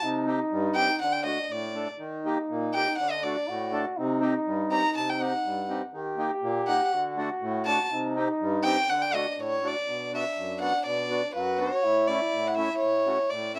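A straight 2/4 pulse at 122 BPM drives this klezmer excerpt, its mood bittersweet yet festive, set in D phrygian dominant before turning to B minor at 9.9 s. A violin carries the melody from 0.7 s, one bowed player placed up front with a soft attack and an airy, pure, floating tone that carries a slightly boxy edge. Beneath it, a trombone with a cup mute plays a second line in a classical style, its sound bright yet veiled, soft and vintage in character. The accordion supplies the accompaniment, reedy and warm, sitting up front with a small-room boxiness. A moderate studio ambience wraps the trio, and the chords move among Cm, D and Eb before settling onto Bm and A in the closing stretch.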